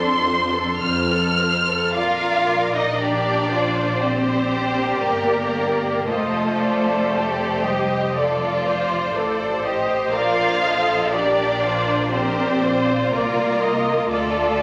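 Unhurried and elastic, the pulse sits at 59 BPM in 4/4, with rubato stretching the beats unevenly in this slow, romantic movement for string orchestra in Bb major. The first violins carry the tender melody from F4 up to F6 with a soft attack, expressive vibrato and a smooth top, while a second violin section traces an intense, somewhat distant line beneath. Violas fill the accompaniment with an even, smooth tone, and the bass is shared by rich, focused cellos and clear double basses below them. The harmony moves from F to Bb at 2.0 seconds, passes through an F13 chord, and returns to Bb before settling on a rootless Bb/D at 14.1 seconds. A wet recital hall reverb wraps the strings in a serene glow, and the passage is cut from a longer piece.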